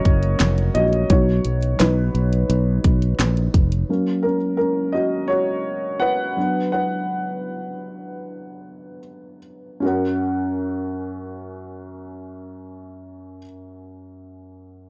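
Uplifting and anthemic, this short cut from a longer piano-driven pop piece sits in F# major and a straight 4/4, with the tempo moving between 73 and 86 BPM. A dark upright piano carries the accompaniment throughout, its mellow, woody tone slightly detuned and vintage, with long sustain ringing across a range from F#2 to F#5. For the opening seconds a fretless electric bass, direct and up front, joins alongside an electronic, layered pop drum kit with a punchy kick, fat snare, handclaps and hi-hat that was re-recorded in a small room. Both bass and drums stop near 3.9 seconds, leaving the piano on its own as the pace slows through to 9.8 seconds, where the harmony shifts from F# and B into a shaded B minor before landing back on F#. The sound is dry and close, in the manner of a 1970s studio, touched with a digital ambience.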